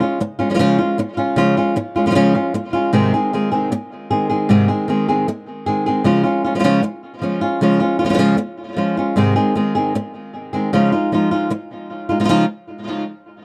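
A bright, fingerpicked acoustic flamenco guitar sits up front alone, its fresh strings carrying a touch of tape echo as it plays a fiery, proud passage in Db major at 154 BPM in a straight 4/4, tuned to A4 = 438 Hz. The harmony moves between Db and Ab before settling on a Dbadd9 at 10.7 seconds, and the guitar stops at 12.4 seconds in this short cut from a longer piece. The sound is dry and close, in the manner of a 1970s studio recording with little reverb.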